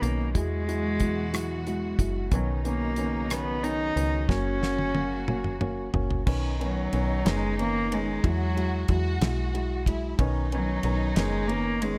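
A small room lends a gentle ambience to this tender, swaying pop ballad in a lilting six-eight, cut from a longer piece. A single bowed cello carries the melody up front with a nasal, reedy, gut-string tone in a period style, set against a dark, woody upright piano that supplies mellow accompaniment. A clear, focused studio string section holds lush sustained chords beneath them until 6.3 seconds, when a soft-attacked, expressive violin section takes over with a vibrato-rich second line. Down low, a snappy, metallic FM bass with a fast, decaying attack sits up front alongside a dry, damped 70s drum kit with a fat snare, tight kick and bright cymbals, which plays a fill from 4.3 seconds. The harmony moves gently between Eadd9, Badd9 and F# chords.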